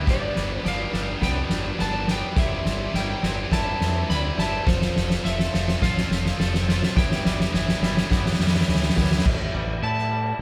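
Soft-mallet drums sit up front in this euphoric, soaring post-rock clip, with a fat snare, boomy kick and crash and ride cymbals driving a fill that builds through the first 9.3 seconds. A growling, overdriven fingered bass and a bright, double-tracked distorted guitar riff push the build until the riff stops at 9.2 s, while a dark, slightly broken-up slide guitar carries the high melody over twangy, compressed clean arpeggios in the background. The band plays live together in a moderate stone room, moving through G7, C6/G, F and Em7/G before a final chord change at 9.3 s.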